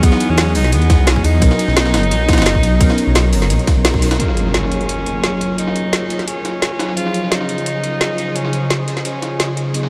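Straight drum and bass drums from a layered kit with a woody snare and metallic hats, backed by a gritty, pitched-up sampler kit in the background, carry this uplifting, dreamy liquid drum and bass excerpt, where an overdriven, tight electronic kick drops out at 4.0 seconds and a deep, rumbling detuned saw bass up front stops at 4.2 seconds just as an electronic impact lands, while a clear, distant tenor saxophone with light vibrato and tape echo floats over a mellow tine electric piano with phaser and diffuse delay and ethereal, chorused pad chords that pump and take on a filter sweep, the mix soaked in a huge ambient reverb.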